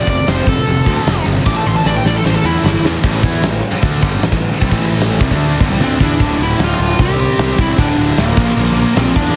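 Up front, a huge arena drum kit pounds through this menacing, aggressive hard rock excerpt at 152 BPM, its punchy kick, medium-tuned snare and bright cymbals ringing in a hall-like, pumping room, with fills at 1.5 seconds and again at 5.8 seconds. A growly, fuzz-soaked picked electric bass sits just as far forward, direct and amped with overdrive. A smooth overdriven lead guitar opens with a solo over F and A5, drops out at 2.8 seconds, then returns at 5.8 seconds, its slapback echo trailing the melody as the chords move through Dm, C5, D5 and Bb5. Behind it, three bright, picked guitars grind out the riff: a heavy high-gain part and a tight distorted part hold on in the background, while a very quiet double-tracked high-gain guitar stops at 6.2 seconds. The whole mix carries a small room ambience and a heavily compressed, radio-like sound, cut from a longer piece.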